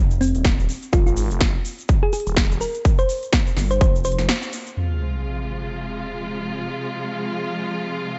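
A swung 125 BPM bass-house groove in 4/4 and F minor drives this aggressive, bouncy excerpt, as a punchy electronic kick, a big-room kit with crisp low-passed hats and snare, and a grainy background egg shaker bounce over a thick, swirling phased saw bass with tube saturation and sidechain pumping, while a round, tine-like thumb-piano pluck drifts through chorus and dub echo, until a break at 4.3 s gives way at 4.8 s to a sub drop and clear, vibrato-rich studio strings holding pumping sustained chords.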